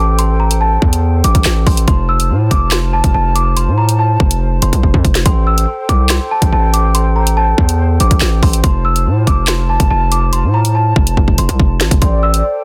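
A half-time drill groove drives this short, ominous cut from a longer hip hop track, with an electronic drum kit of hard-clipped kick, sharp snare, handclaps and hi-hats sitting up front, broken by drum fills around 4.8 and 11.2 seconds. Beneath it, a distorted 808-style bass rumbles low and heavy, its saturated, aggressive tone carrying a noise layer and a fast attack that decays. A delicate, bell-like celesta plays the menacing melody high above, softened by a low-pass filter and trailed by digital delay. A mellow flute section holds airy sustained chords with vibrato and rolled-off highs, moving between Am7 and F. Just before the end, at 12.0 seconds, a velvety synth lead enters briefly with a second line, smooth and detuned under chorus and delay. The mix is dry, dense and heavily limited, with a loud modern punch.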